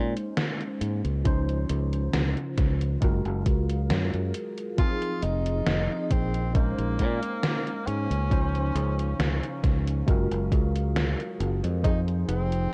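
Woozy and nostalgic, this slow vaporwave fragment at 68 BPM in Db major drifts over Bbm11, Dbmaj9, Gbmaj9 and Fm7 chords, with a barky, slightly out-of-tune tine electric piano carrying chorus and tape echo, a very quiet warbling square-and-triangle pad, a bright, growly fingered bass up front, an overdriven gated drum machine with hi-hat and snare, a thumpy overdriven kick from 1.3 seconds, and a distant, roomy tenor saxophone entering at 4.8 seconds with vibrato, sampler grit and tape echo, all set in dark, cassette-tinged production.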